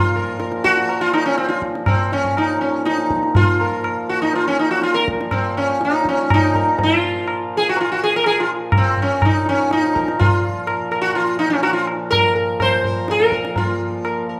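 A plucked sitar and a reedy pedal harmonium open together, the harmonium holding a low drone between Bb2 and F3 while the sitar carries the melody, with the tabla joining at 0.4 seconds. This is Hindustani classical music in raga darbari on Bb, tuned to A4 = 438 Hz, and the fragment carries a solemn, longing mood. The pulse sits around 123 BPM in a straight 7/4 and speeds up across the whole passage. The sitar sits up front with a round, buzzing tone, its sympathetic strings lending a shimmering halo as the line moves between C4 and C5. Beneath it the harmonium breathes with a warm, boxy small-room character, while the high-tuned tabla has a short ring and a small-room sound. A moderate recital-hall reverb surrounds the ensemble, and the music breaks off at 14.4 seconds, mid-flow in a longer performance.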